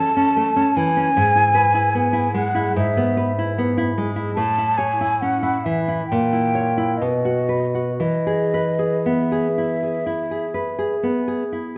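Serene and warm, this short romantic duo in E major drifts in a rubato 4/4 at roughly 56-77 BPM. An airy, hollow concert flute carries the melody with vibrato and tongued notes, while an up-front, full-bodied nylon-string guitar is fingerpicked beneath it, moving from A through E/G# and an A#dim7 to B before settling on E. A moderate recital hall reverb of 1.8 s gives the pair a natural sense of space.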